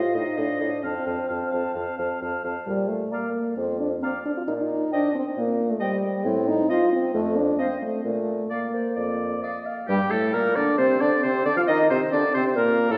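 The French horn sits up front in this spirited, cheerful excerpt from a quick classical-period movement for wind quintet in B-flat major, holding a warm accompaniment in its middle register. The silver concert flute carries the melody, airy and tongued with vibrato, yet very quiet and distant, while the oboe rides close behind as a second line, also prominent, with a light vibrato and a roomy tone. The dark clarinet, soft in attack, fills out the accompaniment from the background, and the bassoon anchors the bass, entering at 0.1 seconds with a gentle vibrato of its own. The tempo sits around 133 BPM in 4/4, though the pulse is played with rubato, and the harmony moves from F7 over A through F and B-flat to C minor seventh, with a new section beginning at 9.9 seconds. A reverberant concert hall places the ensemble further back in the room, giving the sound a spacious, resonant glow.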